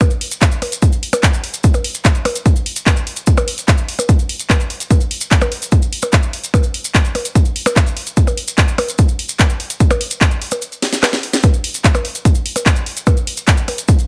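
A straight trance groove drives this psychedelic, percussion-only passage taken from a longer track, built on a heavy, layered electronic kick and a techno kit of handclaps, hi-hat, percussion blips and a cracking snare, both sitting up front with a large-room character. Quieter, grainy maracas add a mellow acoustic shimmer in a small-room space, and the overall mix stays fairly dry. The kick drops out at 10.6 seconds while a drum fill runs from 10.8 to 11.4 seconds before the pulse returns.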